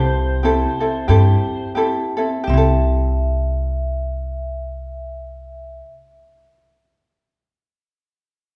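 A lilting swung eighth-note feel in four sets this short Hawaiian fragment, cut from a longer piece, and the pace slows over its opening stretch. The mood is sunny and dreamy, resting on a C6 chord at the start. Electric pedal steel guitar carries the melody with fingerpicks, slide and volume swells, its clean, compressed tone sitting back in the mix until it drops out at 1.7 seconds. Up front, a fingerpicked acoustic ukulele gives light accompaniment alongside a pizzicato upright bass on gut strings with a woody, dark, thumpy sound. At 2.5 seconds a vibraphone played with medium hard mallets enters as a second line, bright and airy with a metallic ring and slow motor vibrato. The band plays live in one large studio room, drenched in lush reverb, and the ukulele is the last to sound, lingering until 6.1 seconds.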